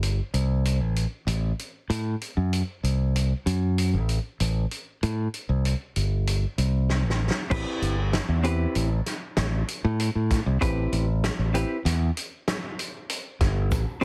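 A bright, punchy fingered electric bass carries the low end of this intricate, brooding progressive instrumental, sitting up front and direct in a low register while the harmony moves between Am7 and Am6 in A dorian. The piece moves at 96 BPM in an uneven 5/4 with a straight feel, and a loose indie drum kit plays throughout, with a fat snare, a punchy kick, crash and hi-hat, and a rolled-off top in a mid-forward studio-room sound. A drum fill at 6.9 seconds leads into a new section at 7.5 seconds, where a vintage hollow-body jazz guitar enters with clean, picked accompaniment in a mid register, its tone warm and compressed. A grainy, bright tube shaker appears close and dry in the background only at 13.7 seconds. The mix is dry, with little reverb and a heavily compressed, radio-like sound, and this short cut is taken from a longer piece.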